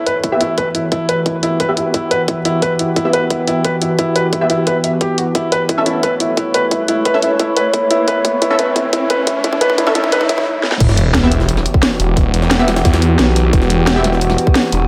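Dark and tense, this technical drum and bass excerpt builds over an eerie metallic drone, soft felt-muted upright piano arpeggios with dub echo and audible action noise, bold orchestra-hit-like synth stabs, tight electronic kick and a cracking-snare kit, with a fill and background riser leading through a brief stop into a drop at 10.8 seconds, where a thick, swirling phased saw bass enters up front alongside a gritty, high-tuned jungle sampler-style kit in the background, all in a lush digital hall.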